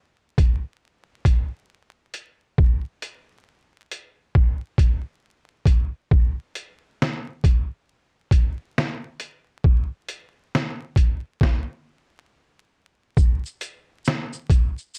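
Cosy and nostalgic, this excerpt from a longer hip hop piece moves at a slow, swung 68 BPM on a single up-front, sampler-style trip hop drum kit that enters at 0.4 seconds with a thumpy kick, medium-tuned snare, hi-hat and shaker, all pitched down, compressed and gritty with vintage 12-bit character, broken by a stop from 11.4 to 13.2 seconds, in a dry mix dusted with vinyl crackle.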